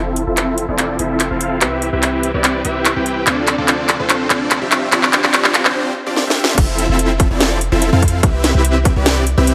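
Future bass at 145 BPM in a half-time feel and C major, this playful, euphoric excerpt builds for 6.6 seconds as a huge, detuned supersaw riff pumps through a filter sweep and digital delay over a deep, boomy 808-style bass and an overdriven trap kit with a sharp snare and metallic hats whose fills break off at 5.8 seconds, before the drop hits with a hard-clipped electronic kick over Fmaj7 and Cmaj7, all set in a lush hall reverb.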